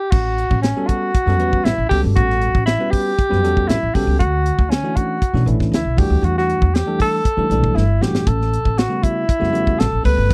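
A breathy alto saxophone with slapback echo and scooped subtone notes opens this bright, slick electric jazz fusion excerpt at 118 BPM in A mixolydian, joined almost at once by woody pizzicato upright bass and a tight, up-front funk kit with a high-tuned snare, while a clean, bell-like tine electric piano enters at 0.8 seconds over chords moving from A13 through Dmaj9 and Em11, and a drum fill at 7.8 seconds leads back to A13 in a dry, close 1970s-style studio sound.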